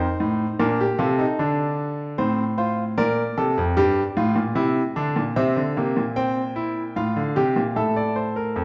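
A classical, baroque-style fugue in three parts, this short excerpt cut from a longer piece carries a serious, solemn mood at a steady 75 BPM in straight 4/4 time, tuned to A4 = 439 Hz. A bright concert grand piano plays solo for the full 8.6 seconds, spanning F2 to G5, its tone brilliant and natural with a deep bass and an up-front presence. The harmony opens on a rootless F, moves through Bb, F/A and Gm7, and reaches C before settling on F/A at 7.0 seconds. The piano sits in a wet recital hall with a reverb time of 1.6 seconds, giving the contrapuntal lines a resonant sense of space.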